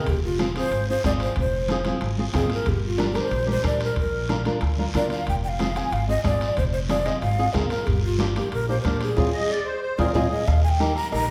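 Fiery and driving, this cumbia moves at a brisk 184 BPM in F dorian, cut from a longer piece. A breathy, hollow shakuhachi carries the melody up front from the very start, its mellow vibrato and soft attack trailed by tape echo. Underneath, a woody, bright pizzicato upright bass and a dark, fingerpicked flamenco guitar outline chords moving through Fm, Gm and Bb. A soft-beater bombo, damped congas, and ringing timbales and cowbell sit in the background, joined by a raspy, distant guiro. Near the end, a band accent arrives at 9.2 seconds and a drum fill follows at 9.5 seconds. A reedy, shimmering musette accordion slips in briefly as a second line from 9.3 to 10.4 seconds before the harmony lands on Eb. The whole ensemble sounds set back in a large studio with a lush, reverberant wash.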